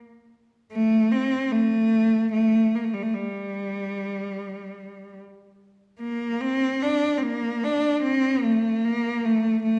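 A lone bowed cello carries this haunting, mournful Celtic folk fragment, entering at 0.7 seconds and singing until the cut at 9.8 seconds. Its tone is clear and focused, with vibrato, and the single player sits close and up front in the sound, staying within a narrow span from G3 to D4. The triple metre moves with rubato, so the beats fall unevenly and the phrasing feels free. Around 5.6 seconds the melody moves into a new section, continuing the sorrowful mood. A wet recital-hall reverb, typical of a church or concert hall, lingers for about 1.6 seconds around the cello.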